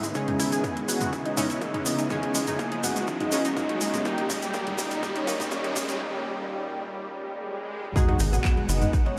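A tight, punchy sawtooth sequencer bass arrives up front at 8.2 s in this driving, dark melodic techno cut in G# minor at 123 BPM, landing on the drop at 8.0 s after a build-up with a riser, a break at 6.0 s and a swell, while a round, brassy synth brass melody, an airy, dreamy lead with vibrato and 12-bit grit, a thick, warbling unison pad under a filter sweep, detuned ring-modulated pluck arpeggios and bright, wave-folded brass stabs all pump against the background electronic kick, tape-warm analog drum machine handclaps, hi-hat, rim click and toms, a grainy acoustic tube shaker and an electronic impact, all soaked in a huge, dreamy reverb.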